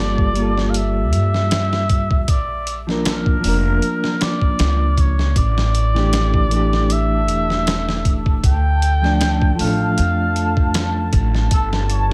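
A cup-muted trumpet with vibrato sings a veiled jazz melody over a dark, clean fingered electric guitar with tremolo, both trailed by tape echo, while a woody pizzicato upright bass on gut strings sits up front, and a gritty, compressed sampler-style drum kit with a thumpy kick and fat snare joins at 0.2 seconds. This hypnotic, smoky trip hop moves at 78 BPM in D harmonic minor with a light 16th-note swing, drifting through Gm9, Bb, A7sus4 and Dm in a roomy digital ambience. At 7.0 seconds a deep, detuned analog pad with chorus and a slow attack rises in the background, and the passage is cut from a longer piece.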